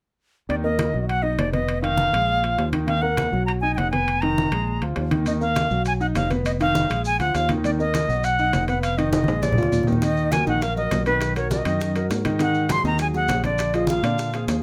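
A fiery, danceable salsa in straight 4/4 at 202 BPM, this excerpt cut from a longer piece rides on low-tuned, thick-skinned congas played with soft hands in the background and ringing metal-shell timbales heard close and dry, with a drum fill from 9.1 to 10.0 seconds. Up front, a bright, reedy concert flute with vibrato and a crisp attack carries the melody in Eb harmonic minor, cycling through Ebm, B, Fm7b5 and Bb7. A clear, intimate grand piano with audible action noise supplies the accompaniment, while a fretless electric bass, direct and amped with analog chorus, sits forward with a warm electric tone. Grainy, band-limited vintage maracas join in the background at 5.3 seconds. At 10.0 seconds the music settles into Eb minor with slower chord changes, Ebm, Bmaj7, Ab5 and Bb7, as tight, high-tuned bongos struck with hard hands enter, all set in a moderate studio ambience.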